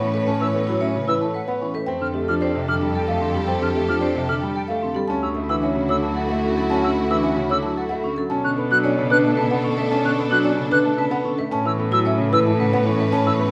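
Propulsive and bright, this minimalist classical pattern piece in A major moves at 112 BPM in 3/4, cut from a longer work, with a woody, rustic soft-mallet marimba carrying the melody while a mellow French horn traces a smooth second line in the background. A boxy baby grand piano plays the accompaniment, a lush, bowed string section holds sustained chords, and a single rich cello with portamento supplies the bass. A metallic, ringing vibraphone and a pure, distant silver flute, entering at 0.4 seconds, spin arpeggios over a cycle of Aadd9, Fadd9, Dadd9 and Bm7, all set in a moderate recital hall reverb.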